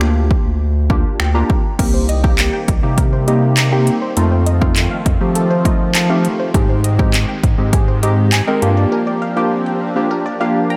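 Dance-pop in C minor at 101 BPM, this energetic, confident clip from a longer piece moves through Gm7, Cm7, F7 and Abmaj7 chords under a dreamy mix soaked in plate reverb. From the start, a punchy, overdriven house drum kit sits up front with metallic hats, handclaps, finger snaps and crash, beside a deep, thick, saturated sub bass that pumps with the sidechain. Glassy digital keys with a detuned, wave-folded tone and a filter sweep carry the accompaniment and add short fills. At 1.8 seconds a soft, airy supersaw spreads sustained chords in the background with lush chorus, joined by a crystalline wavetable pluck playing arpeggios through tape echo. The drums drop out at 8.8 seconds, and a very quiet electronic swell appears at 9.3 seconds as the keys and pads ring on.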